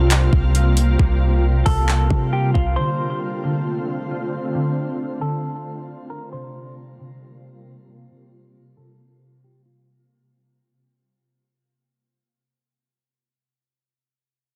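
Dense and heavily limited, with little reverb in the room, this hazy, melancholic cloud-rap fragment is cut from a longer piece and runs under a fade-out and a filter sweep from start to finish. At 135 BPM in 4/4 with a half-time feel, a deep, boomy 808-style bass with a sine body and a noise layer hits up front alongside a soft-kicked electronic drum kit with metallic hi-hats and handclaps, both dropping out just before 3 seconds. A shimmering, ethereal pad holds detuned, granular chords with an octave-up sheen, chorus and its own reverb, while a ringing, fingerpicked concert harp plays arpeggios through a low-pass filter and delay until 12.9 s. A dark, clean semi-hollow electric guitar enters at 1.7 s with a quiet melody, filtered and treated with delay. The harmony moves from C7sus4 to Dm7 and back to C7sus4, keeping the mood hazy and melancholic.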